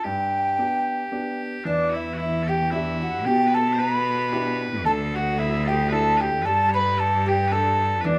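A woody, pure baroque flute carries the melody with a soft attack from the first moment, over a piercing, continuous bagpipe second line and a natural-sounding baby grand piano accompaniment in this rollicking, lively Celtic waltz in E minor at 113 BPM, set in a swung 3/4. At 1.7 seconds a fingerpicked, ringing harp slips in behind as another second line, and a biting, intense bowed cello takes the bass with vibrato, sitting up front beside the flute as the chords move from G through Em7 and Dsus2 to Gsus2. A small room adds moderate reverb to this passage cut from a longer piece.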